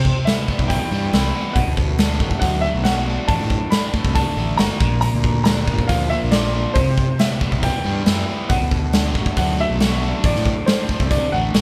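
Recorded with a light reverb and the feel of a band playing live together in one room, this short cut from a longer indie rock piece sounds jangly and wistful. It moves at 138 BPM in a straight 4/4, set in C lydian with the tuning at A4 = 443 Hz, and cycles through Cmaj7, Bm7, D/A and Bb before returning to Cmaj7. A bright upright piano carries the melody high in its range, its woody, slightly detuned tone sitting close and intimate with audible action noise. Beneath it, a double-tracked, crunchy overdriven guitar picks out a riff, while a fingered electric bass, recorded both direct and through an amp, adds a fuzzy, overdriven low end. A big acoustic rock kit enters at 0.1 seconds, up front in a big room with a punchy kick, a medium-tuned snare and hi-hat.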